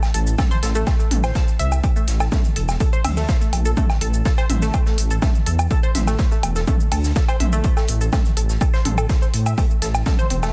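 Hypnotic and driving, this melodic techno excerpt runs at 124 BPM in A phrygian over a steady A minor chord, anchored by a punchy, up-front electronic kick and a deep, rumbling detuned saw bass that pumps under sidechain compression. A techno kit of smooth hats, shaker, toms and woodblock pumps along with it, while a tight sequenced synth plays filter-plucked sawtooth arpeggios with chorus and tape echo, and a swinging big-band kit of hi-hat and medium-tuned snare sits in the background. The sound is dense and heavily limited, set in a digital ambience.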